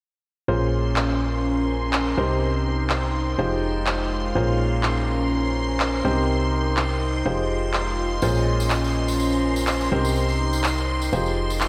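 Piano house at 124 BPM in Bb dorian, energetic and soulful, cut from a longer piece and soaked in a dreamy hall reverb. A clear, worn baby grand piano plays a riff with tape echo over a punchy, round FM bass with tube saturation, while shimmering vintage string-machine violins hold chords and an airy, breathy pad with chorus enters at 0.9 s, the harmony cycling through Bbm9, Cm7 and Fm9 with a light swing. Layered electronic handclaps arrive at 1.0 s, and a tambourine joins at 8.2 s.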